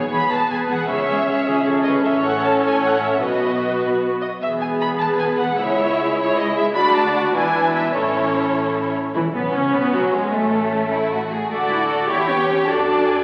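Moving at a quick 102 BPM in a straight 6/8, this spirited, lively classical-period movement for string orchestra, cut from a longer piece, sets a rich, expressive violin melody over a second violin line, a clear, up-front viola accompaniment, and a lush cello and double bass foundation, settling into A major from 6.8 seconds, all heard through a wet scoring-stage reverb and the crackle of a very old 78 rpm record.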